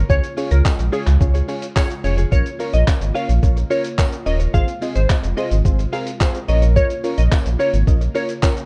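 A deep, sine-like sub bass with octave pumps up front beside a muffled, pitched-down sampler-style drum kit of thumpy kick, handclaps, hi-hat and shaker in this energetic, bittersweet dance-pop excerpt at 108 BPM in Bb minor, where a glassy, warbling wavetable pluck carries the melody over crisp, detuned wavetable chord stabs, an airy, breathy pad, a clean direct-recorded electric guitar riff in the background and a very quiet, distant tambourine entering at 0.7 s, all moving through Db, Bbm, Fm and Bbm in a dry, rough home-demo mix.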